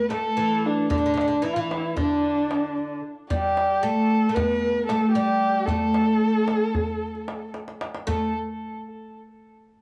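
Hypnotic and soulful, this short excerpt from a longer Turkish makam ensemble piece moves in 9/8 at 226 BPM in A makam ussak, with a dark, bowed kamancheh carrying the melody up front, its soft attack, vibrato and portamento giving it an expressive, smooth-topped voice touched by analog delay. A bright, woody fretless oud plays a plectrum-plucked second line on double strings, also up front, while a deep, large clay-shell darbuka with natural skin sits lower in the mix, compressed and saturated, and delivers a drum fill from 7.5 to 8.1 seconds. The trio plays in a moderate studio reverb, and the phrase shifts into a new section at 8.1 seconds.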